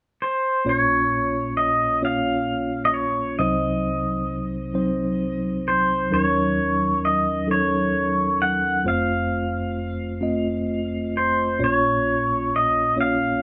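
Folk in a slow, straight 6/8, reflective and heartbroken: a twangy, fingerpicked pedal steel guitar carries the melody up front with slide and volume swells, while a mellow tine electric piano enters at 0.6 seconds to lay down Bbm, Cdim, Ebm7 and F chords beneath it, all softened by light reverb in this short cut from a longer piece.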